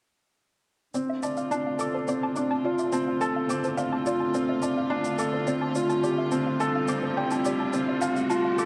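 This hypnotic, cinematic piano and strings electronica excerpt moves at 106 BPM in 4/4 with a straight feel, set in D minor as a build-up that opens at 0.9 seconds. A felt-muted upright piano carries the riff up front, its soft, intimate, mellow tone touched with digital delay, while an electronic shaker keeps time far down in the mix. A dark studio string section holds sustained chords from 1.0 seconds, bowed with light vibrato and a reedy, gut-string, period-style character that sits distant in the ensemble. Alongside it, a round, gentle synth pluck with a fast attack and short decay spins arpeggios in the background, colored by chorus, cassette tape and digital delay. A very quiet electronic riser enters at 3.2 seconds, and at 5.5 seconds the harmony shifts from Dm7 to Fadd9/D. The production is dark and high-pass filtered, wrapped in a wet echo chamber reverb with small room ambience.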